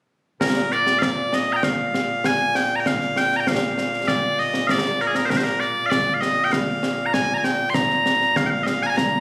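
Proud and stirring, this short cut from a longer piece of traditional Scottish pipe music moves at 98 BPM in a straight 4/4, set in B-flat Mixolydian. The bagpipes carry the melody from 0.4 to 9.2 seconds, loud, piercing and continuous, sitting up front as the lone melodic voice across a range from Bb2 to C6. Concert snare drum and concert bass drum hold the drum part beneath them, acoustic and close, with brilliant cymbals and the sound of a live room around them. The drums are a little quieter than the pipes in the balance. Captured on a phone in the room, the recording has light studio reverb and compression.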